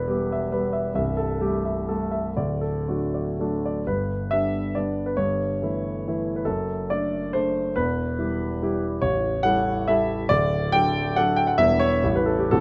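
A warm concert grand piano opens alone, up front and close, in a romantic classical dance in triple time built on dotted rhythms. The mood is proud and graceful, and the tempo moves freely with rubato, ranging from 113 to 150 BPM. The piano spans a broad register, from a deep bass at the bottom of the keyboard up into the treble, and the close, detailed sound keeps every note clear under a light reverb. The harmony begins in E minor and turns through A minor toward D, then a new passage from 3.9 seconds starts on G and travels back through E minor and A7 to D. This short cut from a longer piece closes on Em7 and A7 around 12.0 seconds.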